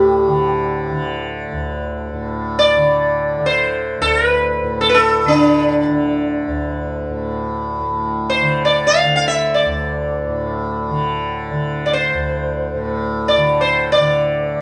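Solemn and longing, this short cut from a longer Hindustani classical piece in free time unfolds raga Bhimpalasi in D, with a bright, plectrum-plucked sitar carrying the melody from D4 to F5, its buzzing tone ringing with sympathetic strings, over a softly plucked tanpura drone whose warm shimmer sits low beneath it, both heard up front in a moderate studio reverb that captures the players together in one room with a mellow, rounded top end.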